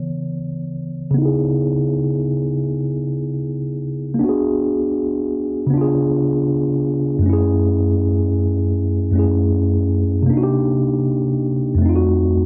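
A hazy cassette-tape sound with moderate studio reverb frames this short, melancholic hip hop fragment, cut from a longer piece, at 79 BPM in C# minor with a swung sixteenth-note feel. A mellow, clean tine electric piano plays alone and up front through a low-pass filter, moving through C#m7, G#m7b5, C#7b9 and F#m9 before Cm7 and F7b9. A filter sweep begins on the piano at 1.2 seconds and continues to the close at 12.5 seconds.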